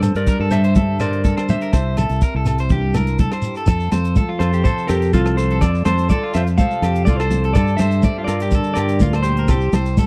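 Joyful and danceable, this short highlife guitar band excerpt moves in a straight 4/4 groove, with a dark, clean electric guitar carrying the melody through spring reverb while a twangy, slightly broken-up electric guitar plays arpeggios and a picked steel-string acoustic guitar plays quietly in the background. Up front, a fingered electric bass sits beside a tight funk drum kit of hi-hat, tight kick and rim click, with soft-handed, thick-skinned congas, a grainy shekere and ringing agogo bells filling out the percussion behind them. The sound is dry and close in a 1970s studio manner, and the harmony shifts from Gsus2 and C to F at 3.7 seconds before returning to Gsus2.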